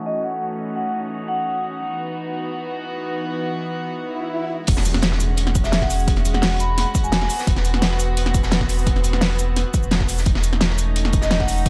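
Liquid drum and bass with a lush, warm mood, opening on distant, floating bowed strings and ringing, metallic vibraphone phrases carrying a dub echo before a background swell and impact lead into the drop at 4.7 seconds, where a deep, round sub bass, a punchy overdriven electronic kick, an up-front pop kit with a fat snare, and a gritty, saturated breakbeat kit with a rolled-off top join the strings.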